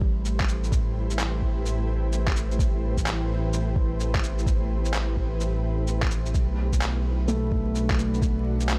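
This short future garage excerpt feels rainy and nocturnal, with a swung groove and vinyl crackle over a light digital ambience. A dark detuned saw bass sits up front, deep and rumbling with a beating, saturated edge, while a soft, overdriven electronic kick carries the small-room character of a re-recorded drum. Sampler-style shaker and handclaps enter at 0.3 seconds, pitched down, compressed and muffled under studio reverb. A felt-muted upright piano plays mellow, intimate accompaniment in a narrow low range, with audible action noise, 12-bit sampler grit and tape echo. Above it, a bright granular cloud pad holds blurred, evolving chords, and the pad, bass and piano all pump against the kick as the harmony moves from Am7 to Bm at 6.3 seconds.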